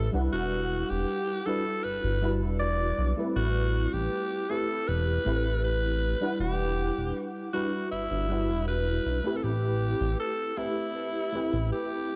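A straight 4/4 pulse at 79 BPM carries this melancholic, nostalgic vaporwave excerpt in E minor, where a breathy, raspy alto saxophone sings the melody up front through tape echo over a mellow, warbling FM electric piano with ensemble chorus and 12-bit sampler grit, moving from Em9 to Am9 at 9.4 seconds, while a glossy, up-front chorused synth bass holds the low end until a brief break at 11.7 seconds, all set in light studio reverb.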